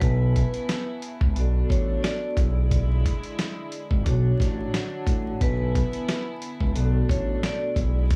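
This short excerpt of dark, reflective boom-bap hip-hop opens with everything at once: a dusty, sampler-style drum kit with a thumpy kick, medium-tuned snare and hi-hat, swung 16ths at 89 BPM in 4/4, and a smooth synth bass sitting up front in a low register. Over this, a vibraphone played with hard mallets carries a short melody between B4 and D5, its ringing tone set in a boxy small room and trailed by analog delay, until it stops at 7.7 seconds. A second vibraphone with medium hard mallets accompanies across a broader span, its darker metallic ring colored by cassette tape and a medium motor vibrato. Underneath, a studio string section holds sustained, bowed chords with a reedy, gut-string, period-style character and light vibrato, placed well back in the mix. The harmony in B dorian moves through C#m7/B, Bm7, E7/B and Dmaj7, while the bass, nasal in tone, is colored by transformer saturation. 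The whole sound is dry and gritty, with vinyl crackle and small room ambience.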